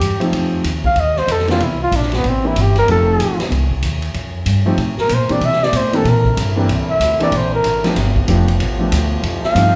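Heard from further back in a large, reverberant studio, this joyful, brassy big band swing excerpt moves at 189 BPM in C mixolydian, led by a veiled, bucket-muted trumpet solo with light vibrato and a smooth top sitting up front. A woody pizzicato upright bass, also up front, carries the low end, while a distant, roomy drum kit with a high-tuned snare and boomy kick swings beneath, and a natural-sounding baby grand piano adds accompaniment from 0.2 s. At 5.4 s a vintage trombone section joins in the background with warm sustained chords.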